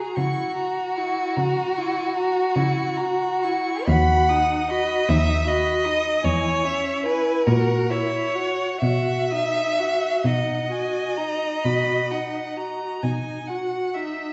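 In a rubato 12/8 lilt of roughly 41-53 BPM, this tender, lyrical excerpt from a slow romantic string-quartet movement in B major sets a smooth, distant first violin singing the melody with vibrato over a rich, expressive second violin line with portamento and a soft-attacked, close viola, while an up-front cello carries the bass with vibrato and gliding portamento, the harmony settling onto B at 8.8 s, all heard from further back in a reverberant recital hall with a softened, dark top end.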